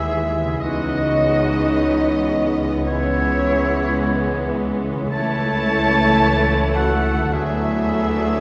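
A lyrical, warm classical passage unfolds at a slow, rubato 53 BPM in 4/4, cut from a longer piece and settling into A major from 5.1 s. Veiled, con sordino violins carry the melody, shadowed by a clear oboe, a very quiet mellow clarinet, a second violin line and a pure silver flute. Beneath them, muted violas, a soft-attack French horn section, a tight trombone section, and dark cellos with lush double basses build a sustained bed, while a very quiet, ringing harp adds arpeggios from 0.4 s, all heard from further back in a wet scoring stage.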